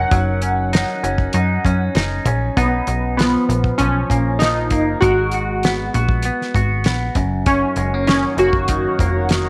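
Indie bedroom pop at 98 BPM in F# major, nostalgic and dreamy, where glossy chorused retro synth keys with slapback echo carry the melody over a clean semi-hollow electric guitar with warbly pitch drift, a punchy, funky analog bass with transformer saturation, a dry, damped 70s drum kit with a fat snare, and a hollow, flute-like pad that sits in the background from 0.0 to 2.5 seconds and returns at 7.5 seconds, all in a small room as chords move from F#6 through Bmaj9#11 and G#m9 in this excerpt cut from a longer piece.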